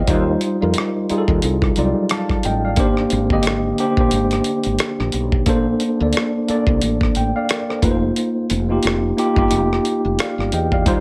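Sensual and relaxed, this short neo-soul R&B fragment sways on swung sixteenths as a worn, slightly out-of-tune tine electric piano, lightly overdriven and heard through its built-in speakers, sits up front over chords moving from Eb69 through Abmaj9#11 and Bbmaj9 to F7sus4, while a woody, growly fretless bass with ensemble chorus and a gritty, compressed sampler-style drum kit with a thumpy kick, hi-hat and rim click, re-recorded in a small room, sit in a wet studio reverb.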